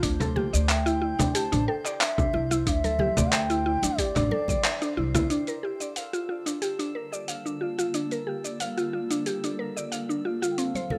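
A round, woody mallet-like synth pluck with chorus and delay spins arpeggios up front through this hypnotic organic downtempo excerpt at 91 BPM, joined by a growly pizzicato upright bass and a soft, overdriven electronic kick that both drop out by 5.2 seconds, a gritty, compressed sampler-style soul kit of congas, handclaps, hi-hat and shaker, bright acoustic congas in the background, an airy bamboo bansuri with vibrato and tape echo, and a faint glassy texture of drifting overtones. The harmony moves from A7sus4 to Gm7 at 5.3 seconds under a filter sweep, and a cloudy granular pad with sidechain pumping arrives at 7.0 seconds, all captured in a rough home-demo mix with light digital ambience.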